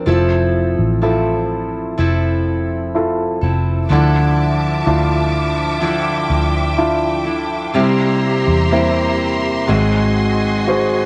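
A straight 4/4 pulse at 62 BPM carries this emotional, heartfelt pop ballad fragment in F major, moving from Fmaj7 through Dmadd9 and C7 to Ab7. An intimate, up-front concert grand piano with audible action noise plays the accompaniment, while a full-bodied jumbo steel-string acoustic guitar fingerpicks arpeggios, finger squeak and all, over a dark, round, foam-muted electric bass. At 3.9 s a lush, bright studio string section joins with bowed, vibrato-rich sustained chords, and a moderate echo chamber reverb adds a sense of space.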